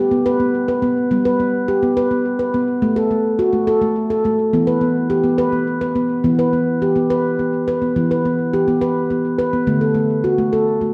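A lone handpan of ringing, mellow nitrided steel, played up front with soft fingertips and touched by tape echo, carries this hypnotic, gentle fragment of meditative world music in E minor at 70 BPM in a straight 6/8, all set in a dark, wet echo-chamber space that lingers about 1.4 seconds.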